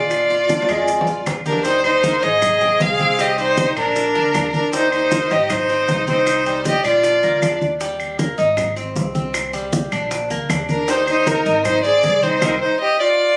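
A bowed violin leads this relaxed, danceable Cuban son and guajira cut at 156 BPM in Eb major, its warm, expressive tone carried by vibrato, soft attacks and sliding portamento up front in the mix. A bright silver concert flute plays an airy, slightly unsteady second line beneath it with crisp attacks, and both drop out at 7.6 seconds before returning at 10.7 seconds. A Cuban tres supplies metallic, picked arpeggios on double strings, some octave-doubled, while a thumpy, gut-strung upright bass plucks a woody low end. The percussion mixes thick-skinned, low-tuned congas played with soft hands, round bongos and distant claves in the background, and grainy, mellow maracas, with a drum fill early on. The chords cycle through Eb6, Ab, Cm7 and Bb, and a band accent arrives at 12.4 seconds as this section of a longer piece ends, all set in light reverb with a roomy, compressed sound captured on a phone.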